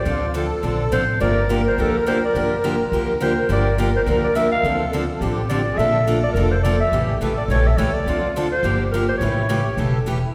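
Bathed in the lingering reverb of a church or concert hall, this bittersweet jazz manouche excerpt swings briskly at 210 BPM in D minor. A raspy, growling clarinet with light vibrato and scooped notes carries the melody over a reedy, shimmering musette accordion second line, while a bright, boxy picked parlour guitar and a woody, thumpy pizzicato upright bass on gut strings sit up front. The harmony moves from Dm7 through Gm7, Bbmaj7 and A7 before cycling back through Dm7, Gm7 and A7.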